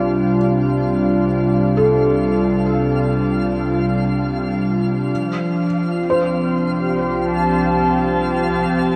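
Floating in free time, this weightless ambient passage from a longer piece rests on a Csus4 chord, with a smooth, detuned sawtooth analog pad up front carrying soft-attack chords with chorus, a muted, mellow felt piano playing intimate arpeggios through tape echo with its action noise audible, a lush bowed double bass section fading in from 0.0 to 9.0 seconds in the background, and a bright, twinkling granular texture sparkling above, all bathed in a wet, long shimmer reverb.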